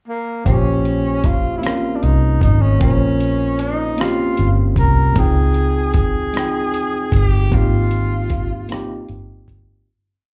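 Slow six-eight R&B in Bb dorian at 51 BPM, this short, yearning and sultry piece sounds like a live club gig heard through the house PA with light reverb. A breathy, distant tenor saxophone carries a motif-based melody of call phrases with vibrato, subtone and scooped notes, while a worn, slightly out-of-tune tine electric piano plays rootless quarter-note chords through a combo amp, both touched by slapback echo, over Bbm69, Dbmaj9#11 and Abmaj13. Up front, a dark, round, foam-muted fingered bass slides through a slow line alongside a gritty, compressed sampler-style drum kit of thumpy kick, hi-hat and rim click, before the recording fades out from 7.5 seconds.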